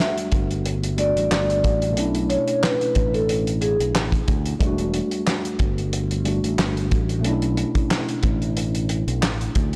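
A swung boom-bap groove at 91 BPM in 4/4 drives this dark, gritty hip-hop excerpt in E minor. It rests on a soul drum kit of kick, snare, hi-hat and handclaps, with a fat snare, a tight kick and a rolled-off top, recorded in a small room and placed up front. A fingered electric bass enters at 0.3 seconds, its amped tone roughened by tube saturation. A mellow tine electric piano, heard through its built-in speakers and filtered at both ends, plays clean accompaniment over the alternating Em11 and Bm11 chords. Above it, a soft-mallet vibraphone carries the melody with a ringing, metallic tone, slow motor vibrato and delay, and stops at 3.8 seconds. The recording as a whole is blown-out and overdriven, with light studio reverb.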